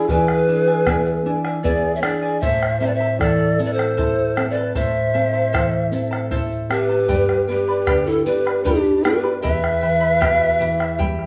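A hollow, vibrato-laden pan flute carries the melody over a breathy, close-miked large quena's second line, while a shimmering fingerpicked charango, a dark, thumb-plucked nylon-string guitar, a round bombo and a grainy egg shaker fill out this melancholic yet festive Andean folk piece in 3/4 at 77 BPM in E minor, moving from E7 through Am and G to Em in a reverberant live room.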